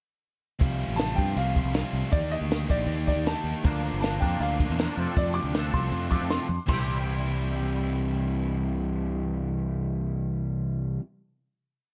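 A carefree yet wistful indie rock miniature in a straight 4/4, moving through a brief interlude before settling on a closing chord at 6.7 seconds. A biting overdriven guitar and a growling fingered electric bass enter together at 0.6 seconds, the guitar ringing out dark, up-front chords while the bass, punchy and overdriven, drives a syncopated riff. A compact cocktail drum kit starts alongside them with a dry, rolled-off sound, a high-tuned snare and punchy kick setting a big rock groove with china cymbal, hi-hat and toms until 6.8 seconds. Above, a clear upright piano carries a woody, boxy motif-based melody of short song-like phrases, touched with slapback echo. A twangy electric guitar adds bright, clean ringing chords with ensemble chorus and slapback echo, and the whole piece sits in a dark production with light reverb.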